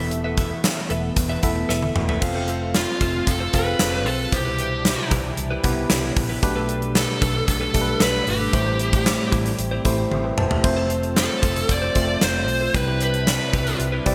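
A straight 4/4 pulse at 114 BPM drives this moody, nostalgic 1980s-style pop excerpt, where a punchy, up-front gated drum kit with bright cymbals and fills at 1.7 and 10.1 seconds backs a round, foam-muted fingered bass, a bright tine electric piano, a swirling sawtooth analog pad with phaser and chorus, and a clean, direct-recorded guitar riff drenched in lush chorus and delay, while a dark fuzz lead guitar joins with the melody at 2.8 seconds over chords moving from Esus4 through F, Cmaj7, Gadd9/B and Am7, all set in a bright digital production with a lush hall reverb.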